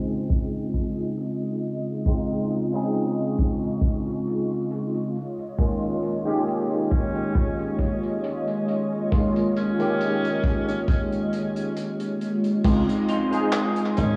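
A barky, lightly overdriven tine electric piano sits up front through a combo amp, its chorus and tape echo blurring the chords of this woozy, dreamy vaporwave fragment, while a thick, airy, detuned sawtooth pad with chorus and phaser holds sustained harmony beneath it. A punchy kick pumps in a studio room alongside a loose indie kit of dark crash cymbal, handclaps and hi-hat, and a bright alto saxophone with light vibrato enters at 6.9 seconds, staying on a single pitch. Near the end a dry, foam-muted thumbed slap bass arrives at 12.6 seconds and a clean semi-hollow guitar adds a brief picked riff at 13.1 seconds, all wrapped in an echo-heavy, cassette-worn, low-passed mix with a filter sweep running through most of the clip.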